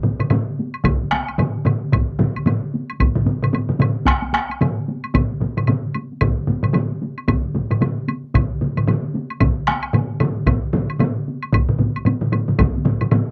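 This dry, close recording has the feel of a 1970s studio, with only a touch of light reverb. It catches a short, powerful and ceremonial stretch of Japanese traditional taiko drumming, cut from a longer piece, moving at 112 BPM in 4/4 with a 60% swing on the sixteenths. A solo taiko part struck with hard sticks sits distant in a large room, while one ensemble of heavy-stick drums sounds from a small room and another hard-stick ensemble comes up front with a vintage, band-limited character. A third hard-stick ensemble, close and dry, joins at 0.8 seconds and drops out at 12.7 seconds. A woody woodblock, close and dry, clicks through nearly the whole passage alongside the drums.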